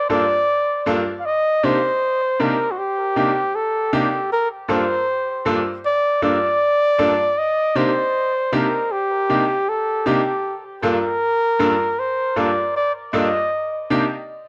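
A warm, close-miked flugelhorn opens this smooth, bittersweet reggae excerpt in G minor at 78 BPM, playing an up-front jazz-style solo melody with a soft attack, light vibrato, scooped notes and tape echo. A brilliant concert grand piano enters at 0.1 seconds as accompaniment, its bright tone and deep bass carrying slapback echo as the harmony alternates between Gm9 and Cm9. The dry, close 1970s-style studio sound has a moderate room reverb, with both parts up front.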